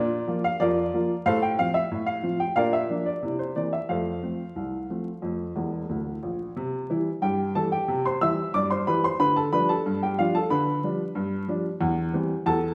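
A woody, boxy upright piano sits up front and plays alone through this jaunty, lively ragtime passage in a straight two-beat feel, its notes decaying with a short sustain across a span from deep bass to bright treble. A brief piano fill at 5.6 seconds leads into a new section at 6.6 seconds, where the harmony shifts to a fresh key center. A wet recital-hall reverb and a vinyl crackle give the cut, taken from a longer piece, the air of an old recording made in a church or concert hall.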